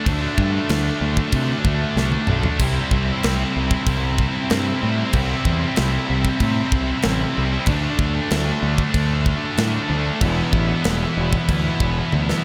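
This heavy metal excerpt opens at once on three guitars riffing together. A double-tracked, compressed fuzz guitar spans low to middle register, while a high-gain guitar and a scooped high-gain guitar, both picked and distorted, sit further back. A growling fingered electric bass arrives almost immediately, its overdriven, direct-and-amped tone forward and warm beneath the riffs. It is joined by a polished acoustic metal kit heard in a big, airy room, with bright crash and splash cymbals, toms, a medium-tuned snare and a tight kick. The mood is aggressive and heavy in a straight 4/4, moving over D5, C and E5 chords, with drum fills near 2.0 seconds and again at 12.1 seconds, all under a light reverb.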